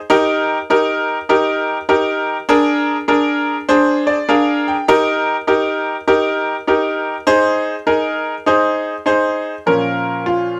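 Passionate and urgent, this short soul excerpt at 100 BPM in a swung 4/4 features a solo upright piano, tuned to A4 = 442 Hz, that sounds brilliant, woody and slightly detuned, with audible action noise and an intimate, up-front presence in light reverb, moving through Eb, Bb7/D, Eb and Ab to Bbm and adding a fill at 3.7 seconds.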